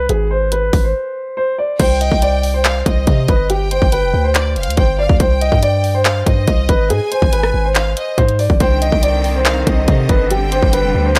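Brooding and melancholic, this half-time trap excerpt sets a dark, mellow grand piano melody with low-pass filtering and delay over a deep, boomy 808 bass and an up-front electronic drum kit of hard-clipped kick, bright hi-hats, claps, rim clicks and crash, with a biting studio violin section adding a delayed second line from 1.8 seconds and a lush, vibrato-rich symphonic string section entering with sustained chords at 8.6 seconds, all under light studio reverb.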